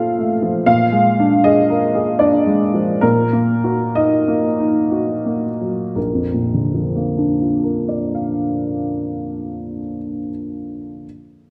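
A woody, slightly detuned vintage upright piano sits up front as the sole voice in this passionate, bittersweet romantic character piece in 3/4, its rubato phrasing slowing through the first 6.0 seconds over F/Bb, Bb7 and Ebm/Bb before settling on Bb, set in a wet recital hall reverb in a fragment cut from a longer work.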